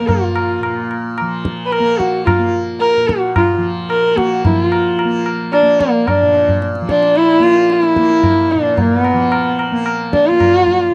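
A dry, close 1970s-style studio sound frames this devotional, meditative Hindustani excerpt at 110 BPM in Bb major, where a dark, woody sarangi sits up front, bowed and gliding with light vibrato, portamento and sympathetic strings, over a softly plucked, buzzing, shimmering tanpura drone and low-tuned, ringing tabla that enters at 0.1 seconds, the melody shifting into a new section at 4.4 seconds.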